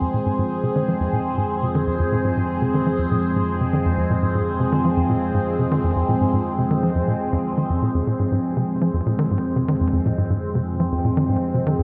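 Ambient, sequencer-driven space music in F minor, this hypnotic, expansive passage is cut from a longer piece and moves at 121 BPM in a straight 4/4 on a sustained F minor chord. Up front, a phased analog pad holds swirling, nasal chords built from detuned sawtooth and wave-folded tones, treated with phaser and chorus. Beneath it, a tight sequencer bass drives a punchy riff with a plucky filter, fast attack and decaying notes, lightly touched by subtle chorus and delay, while a filter sweep runs across this synth bass throughout. From 0.9 s, an analog drone enters low in the background on F2, a warbling, vintage pulse-width-modulated tone with chorus. The whole sits in a vast, echoing space, bathed in a wet cathedral reverb with a long 4.9-second tail.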